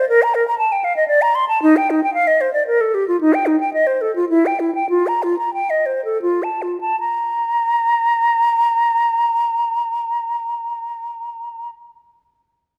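The recording sits in a moderate recital-hall reverb that lets each note ring briefly after it sounds, with the flute placed up front. This is a classical, baroque-style fantasia for unaccompanied flute in B-flat major, cut from a longer piece, with a flowing, radiant mood. A silver concert flute carries the whole passage alone, its tone mellow and hollow yet pure, shaped by tongued articulation and vibrato as it moves between Eb4 and C6. The music sits in a rubato 3/4, with the pulse ranging from 74 to 121 BPM and easing down between 2.4 and 7.0 seconds. A second passage begins at 7.0 seconds and carries the line on until the recording ends.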